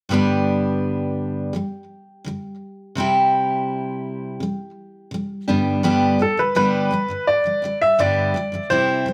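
This short pop excerpt is led by a bright upright piano that carries the melody from 6.2 seconds, its woody, brilliant tone close and intimate, with audible action noise, long sustain, and a touch of plate reverb and delay. Before it enters, a picked steel-string acoustic guitar plays the accompaniment alone from 0.1 seconds, its full-bodied jumbo sound sitting up front. The mood is easy-going and sunny, moving at a relaxed 84 BPM in a straight 4/4 feel in G major. The harmony is simple, moving from G to C and back to G, and the piano arrives shortly after a shift into a new section at 5.8 seconds. A moderate studio reverb gives both instruments a gentle sense of space.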